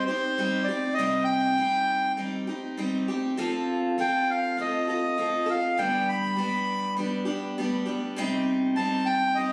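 A reedy, close-miked accordion carries the melody over a bright, picked steel-string acoustic guitar from the first beat in this dusty, reflective rock piece at 100 BPM in C dorian, moving through Cm, F and G before returning to Cm, with both parts up front in a phone recording with light reverb, cut from a longer piece.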